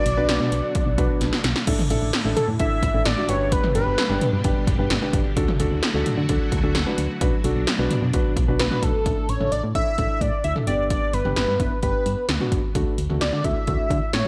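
Synth-pop at 130 BPM in 4/4 with a wistful yet bright mood, this excerpt is driven by punchy electronic pad drums with gated reverb on snare and toms, metallic hats and a drum fill at 1.2 seconds, over a round, dark FM bass and a mellow grand piano moving through Bm, Asus4, G and Dadd9. A thick, detuned sawtooth unison lead with vibrato and tape echo carries the melody up front, pausing at 4.4 seconds and returning at 8.6 seconds. Beneath it, a lush vintage string machine with phaser and ensemble chorus sustains chords in the background until 9.0 seconds, all set in light reverb.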